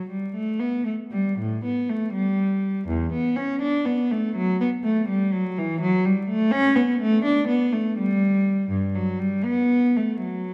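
Serene and flowing, this short excerpt from a baroque-style suite movement for unaccompanied cello moves in 6/8 at roughly 75-84 BPM in dotted quarters, with a gently rubato feel and tuning a touch below standard pitch. A single bowed cello, placed up front, plays alone for the full 10.5 seconds, ranging from E2 to D4 with a dark, reedy gut-string tone, a smooth top and period-style phrasing. A wet recital hall reverb surrounds the playing, and a vinyl crackle sits beneath it.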